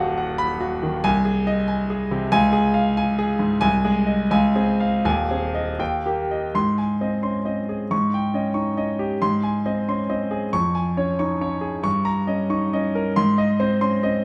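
A smooth, vintage-toned grand piano sits up front and carries this heroic, brilliant classical study entirely alone, cut from a longer piece and lasting about 14.2 seconds. Written in Ab major and a lilting 6/8, it moves with a free, rubato feel at roughly 79-94 beats per minute, counted in dotted quarters. The piano ranges from a deep D#1 up to Db6, giving the virtuoso writing a grand sweep from bass to treble. The opening stretch colors the home key with chords such as B/D#, Dbmaj7 and Eb. At 6.5 seconds a new section settles firmly on Ab and cycles through Eb7 and Db harmonies back to a confident Ab close. A wet stone-room reverb wraps the instrument in a resonant, roomy glow.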